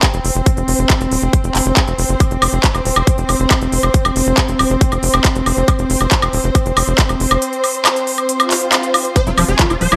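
Set in a moderate digital room, this intense, alien psychedelic trance fragment rides a punchy, up-front electronic kick and a crisp-hatted dance kit of handclaps, hi-hat and woodblock over a tight, driving sequencer bass, while an evolving, morphing wavetable pad and lush bowed strings pump under sidechain; the kick drops out at 7.4 seconds, a background electronic swell follows at 8.4 seconds, and at 9.2 seconds a swarming, bright rave lead with phaser and tape echo arrives alongside a squelchy, resonant acid bass riff with digital delay.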